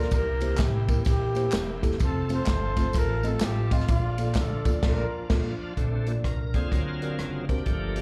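Heard through a venue's PA with light club reverb, this live gospel cut moves at an uptempo 127 BPM in 4/4, swinging its eighth notes in Bb major with a jubilant yet reverent spirit. A mellow, jazz-style horn section carries the melody with light vibrato and a soft attack, while a clean, direct tine electric piano accompanies. Both carry a slapback echo. A bright, shouting tonewheel organ holds sustained chords through a slow rotary speaker, its key click audible. Underneath, a woody pizzicato upright bass and a punchy, up-front acoustic drum kit with crash, ride, hi-hat, snare, rim click and kick drive the groove, with close, dry tambourine and group handclaps set back in the mix. The band hits an accent at 4.8 seconds, and from 5.8 seconds the organ takes a solo over a very quiet, classical-style French horn section holding chords.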